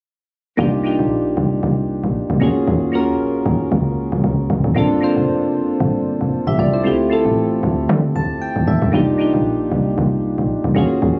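Hypnotic and soulful, this amapiano fragment from a longer piece moves at 115 BPM in C dorian with a gentle swing on the sixteenths, pairing a dark, percussive log drum bass with soft, mellow electric-piano-like synth keys that carry a detuned chorus shimmer and a filter sweep through minor eleventh chords. The keys add a short fill at 7.9 seconds, all heard as if captured on a phone in a compressed club room.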